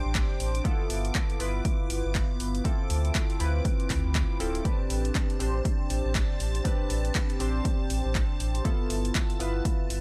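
Deep house at 120 BPM in A minor with a swung 16th-note feel and a smooth, warm mood, built on an up-front overdriven electronic kick and a dry analog drum machine supplying handclaps and hi-hat, a deep sine-and-triangle sub bass doubled at the octave, glossy, dark chorused polysynth stabs with filter sweeps, sidechain pumping and tape echo, and a shimmering vintage string-machine violin texture in the background, also pumping under ensemble chorus, all over an Am11, G13 and Dm7 progression in a digital ambience.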